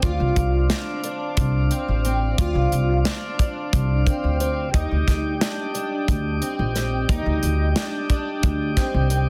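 Driving, bright progressive instrumental band music in 7/8 at 178 BPM (eighths), in Eb major and cut from a longer piece. A woody, dark pizzicato upright bass and an acoustic drum kit with a tight kick, medium-tuned snare and hi-hat sit up front. A fingerpicked twelve-string parlour guitar plays shimmering, octave-doubled arpeggios through ensemble chorus, alongside a smooth, clean tonewheel organ with key click and a slow rotary speaker. The chords move from Dm7 to Ebmaj7 at 4.7 seconds, in light small-room reverb under a dense, heavily limited modern master.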